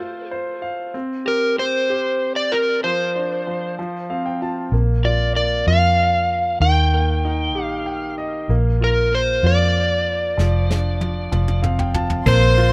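A tender, heartfelt pop ballad in a straight 6/8 at 64 BPM in Bb major, this rough home-demo excerpt opens on a bright, intimate grand piano with audible action noise and recurring fills, joined at 1.3 seconds by an up-front, overdriven slide guitar melody soaked in tape echo, then a dark, round, foam-muted fingered electric bass at 4.7 seconds, and a soft brush kit whose fill starts at 10.4 seconds, before a close, lush bowed violin section and a clean, compressed direct-recorded electric guitar playing arpeggios with tape echo in the background appear at the very end.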